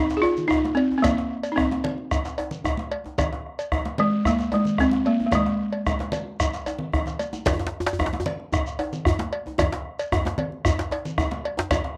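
Powerful and earthy, this West African drum ensemble excerpt opens with a woody, buzzing balafon melody struck with rubber mallets up front, over a metallic cowbell, grainy shekere, bright high-tuned congas, a round bombo and a djembe fitted with metal rattles. The balafon stops at 6.9 seconds, and a drum fill at 7.1 seconds leads into a new section where a second, close and dry djembe joins at 7.5 seconds. A moderate small-room reverb and the warbly pitch drift of worn cassette tape give the recording an aged character.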